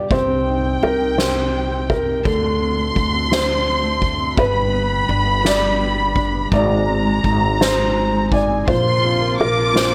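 A felt-muted upright piano carries the aching melody from the start, its thick-felt tone intimate with audible action noise, over a small, thumb-plucked nylon-string guitar in this melancholic six-eight pop ballad fragment. A dark studio violin section sings a lush, up-front second line with vibrato, while a woody, thumpy pizzicato upright bass and a soft-mallet drum kit, with its boomy kick, fat snare and dark cymbals, move through Cm, D7, G and Ab. At 8.7 seconds a veiled, con sordino string section slips in behind on a Bbsus2 chord, in a close, dry room.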